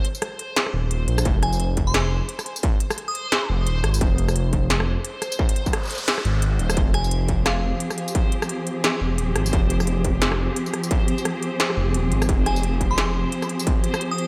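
A distorted electronic kick drum, up front and tape-warm, enters at 1.3 seconds and anchors this dark, cinematic half-time drum and bass excerpt at 174 BPM in F minor, its 16ths swung and felt at half-time over an Fmadd9 harmony. Around it an industrial drum kit of crisp hi-hats, rim clicks, a clanging snare and tambourine runs throughout in studio reverb, while a deep, rumbling detuned saw bass beats between Eb1 and Bb1. From the opening a reversed, dreamy backwards swelling texture hangs softly on C5, bathed in lush chorus and its own reverb. A crystalline FM synth bell appears in brief phrases between F5 and Eb6, starting at 1.4 seconds, its tone roughened by 12-bit sampler grit and trailed by chorus, phaser and diffuse ambient delay. After a short electronic noise sweep at 5.6 seconds, a chamber cello section enters at 6.8 seconds with bowed, expressive sustained chords full of vibrato and portamento, pumping against the sidechain, all set in light digital ambience.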